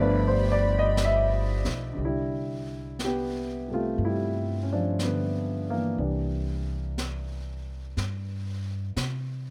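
Light reverb gives this excerpt from a jazz ballad an intimate studio sound, with a natural, warm baby grand piano and a woody upright bass placed up front. The mood is romantic and tender, carried by a slow swing in four. A dark string section opens alongside the piano and bass, its bowed sul tasto chords soft in attack with light vibrato, and it drops out at 2.0 seconds. The pizzicato bass, thumpy with gut strings, anchors the low end while the piano plays accompanying chords through the whole passage. From 1.0 second a brushed drum kit enters quietly, with a high-tuned snare and hi-hat heard in a natural room. The harmony moves from G7 to a lush Cmaj9 and then turns to C7 at 6.0 seconds.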